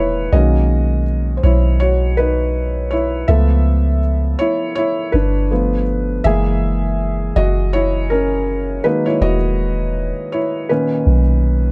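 A felt-muted upright piano and a soft 808-style bass begin together, opening a smooth, tender piece of contemporary R&B with a gently swung sixteenth-note feel in 4/4. The piano carries the featured role from the first second to the end at 11.7 s, its muffled, mellow voicings sitting close and intimate at the front of the mix. Beneath it, the bass supplies deep, round, sine-like low notes with a quick onset and a dark, decaying tail. The harmony moves through lush extended chords, starting on Bmaj13, passing through C#7alt, G9, F#9 and Emaj9#11, and arriving on Bmaj7 near 10.7 s. The sound is dry and present, with little room ambience, and the passage is cut from a longer piece.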